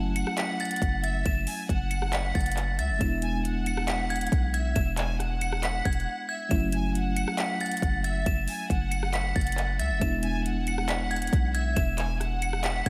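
A deep, boomy 808-style bass sits up front in this dark, eerie trap excerpt at 137 BPM with a half-time feel in F# minor, moving between F#m7 and E7. Above it a metallic, inharmonic FM bell carries the ringing high melody with chorus and delay, while a distant, lush bowed violin section with vibrato traces a second line and a mellow, clean tine electric piano plays the accompaniment. A trap drum kit with a hard-clipped kick, hi-hats, handclaps and rim clicks enters at 0.2 s, a brief break arrives at 6.1 s, and the dreamy mix is soaked in plate reverb.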